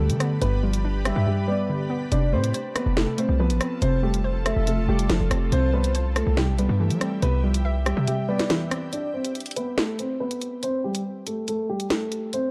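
Ominous and tense, this half-time drill hip hop excerpt in A minor at 141 BPM pairs a worn, boxy grand piano melody through low-pass filter and delay with a bouncy, detuned square pluck, a blurred granular cloud pad, a punchy, heavy 808-style bass with a fast attack, a sharp-snared electronic drum kit with rim clicks and hats, and a velvety, chorused synth lead sitting in the background. After a brief silent gap at 1.3 seconds the groove returns. The bass drops away at 8.1 seconds, and at 8.9 seconds the pluck and pad fall away for a break carried by piano and drums, all under light reverb in a dark, warm production.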